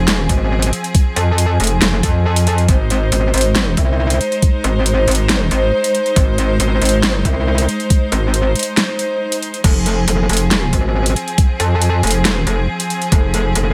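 A metallic, aggressive wobble bass and a clear studio string section holding sustained chords open this heavy, chaotic dubstep excerpt in F minor, with the strings pumping under sidechain and the saturated FM bass carrying chorus and overdrive up front. An overdriven, knocking electronic kick and a layered kit with a huge snare, metallic hats and crash drive the 138 BPM half-time groove, while the harmony moves from Fm to Ab and back to Fm at 9.6 seconds, just after a brief break from 8.8 seconds. Light reverb surrounds the mix, and the bowed strings keep a smooth top despite their biting intensity.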